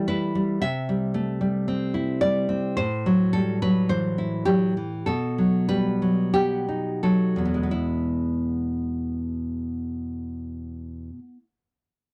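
Rhythm is free and rubato, a 4/4 pulse drifting between 42 and 58 BPM and slowing down through the first 7.7 seconds. This is a romantic piece for solo classical guitar in E minor, passionate and melancholic, cut from a longer work. The nylon-string guitar is fingerpicked and up front, with a full-bodied, deep classical tone spanning E2 to E5, and it plays alone from the start until 11.4 seconds. Its harmony moves from Em through C and Am13 to B, before a turn to E major at 7.7 seconds opens a new section. The sound is dry and close, in the manner of a 1970s studio recording, touched with light reverb.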